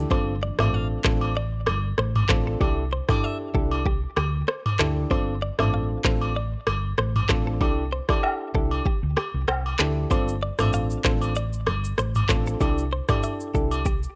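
This dry, gritty recording is a sunny, romantic afrobeats groove in C major at 96 BPM, with a gentle 16th-note swing in 4/4. Overdriven, up-front electronic drums carry a deep kick, handclaps, rim clicks, shaker and toms, and the hi-hats join at 10.1 s. A dark, round, punchy hollow-body bass is fingered low in the mix's foreground, while soft, mellow electric-piano-like synth keys with chorus and a filter sweep hold the harmony. A bright, twangy clean guitar, recorded direct and compressed, picks a riff with a warbly pitch drift and tape echo. Distant agogo bells and woodblock add a lighter acoustic layer as the chords alternate between G9sus4 and C69 throughout this fragment of a longer piece.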